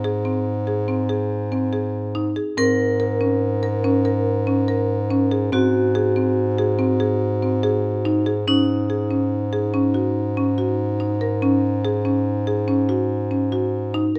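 Closely miked and finely detailed, this recording sits in a light reverb that keeps every mallet stroke distinct. It is a restless, shimmering piece of contemporary chamber music in 7/4 at 142 BPM, cut from a longer work and set in Ab mixolydian. Marimba arpeggios with medium mallets on padauk bars give a woody, warm bed across the whole 14.2 seconds. Alongside them, a vibraphone struck with hard mallets carries a second line in a metallic, ringing tone, bright and coloured by a medium motor vibrato, sitting lower in the mix. The bass clarinet holds the bass on a low Ab, its clear, classical-style voice placed up front. The harmony moves from Ab through Bbmadd9 over Ab to Ab7, then settles on Ab7sus4 at 8.5 seconds as a new section begins.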